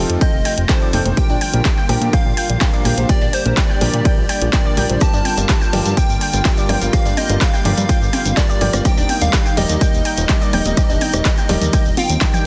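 A punchy, overdriven electronic kick sits up front at a straight 125 BPM in 4/4, joined by an overdriven house drum kit of handclaps, hi-hat, ride cymbal and toms, plus a very quiet, compressed, pitched-up breakbeat kit with a high-tuned snare. Electronic rim click and congas and a grainy shekere enter in the background at 5.0 seconds, and a drum fill lands at 12.2 seconds. This expansive, driving progressive house excerpt in G minor moves from F7 through Bb6, Gm7 and Ebmaj7 over a fat, nasal, detuned sawtooth bass, a smooth chorused pad in the background, bright analog pluck arpeggios with a filter sweep, a moving notch and delay, and intimate, boxy grand piano stabs with audible action noise, while a catchy, full-bodied unison lead carries the melody with vintage 12-bit sampler grit and delay, sidechain pumping breathing through the pad, pluck, piano, bass and lead beneath a dense, heavily limited master with light digital reverb.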